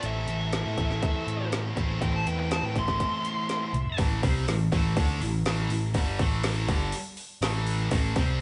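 Blues rock with a southern rock edge, this smoky, gritty power-trio cut moves at 122 BPM in A minor, tuned slightly flat with A4 at 436 Hz, its band heard live in a stone room with moderate reverb and a softened top end. A smooth overdriven lead guitar carries the melody up high while a dark, overdriven second lead sits in the background beneath it, both dropping out at about 4 seconds after a drum fill, leaving the double-tracked, bright distorted rhythm guitar riff, growly, punchy overdriven bass and an up-front, layered drum kit with a tight kick, woody snare and metallic hats to drive on to 8.4 seconds. It is cut from a longer piece and opens on an A minor chord.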